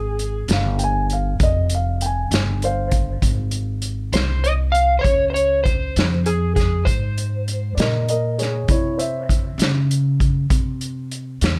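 A straight 12/8 slow-blues sway, smoky and brooding, opens with growly pizzicato upright bass and a dark, slightly broken-up electric slide guitar carrying the melody until 7.7 seconds, while a small-room vintage drum kit with a punchy kick, smooth medium-tuned snare and hi-hat comes in at 0.2 seconds and a mellow, woody upright piano echoed by analog delay adds a second line from 0.5 seconds, set in light reverb as the harmony moves from Fm to Dbmaj7 to C in this brief fragment of a longer piece.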